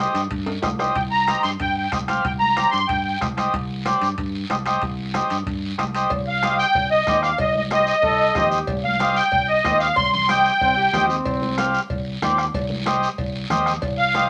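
Latin cumbia with a danceable, driving feel, heard in a short cut from a longer piece. A buzzy vintage combo organ with light vibrato sits up front, carrying the accompaniment, while a dark, round, punchy fingered electric bass anchors the low end. In the background, ringing metal-shell timbales and cowbell, a soft-beaten bombo and thin-skinned congas in soft hands churn along with a raspy, close guiro, and a brief drum fill arrives near the start. A reedy musette accordion with a shimmering, band-limited vintage tone takes the melody up front from 1.0 s, returning in phrases through the later section. A bright, distant trombone adds a second line from 8.0 to 11.7 s, all within a moderate club-sized reverb.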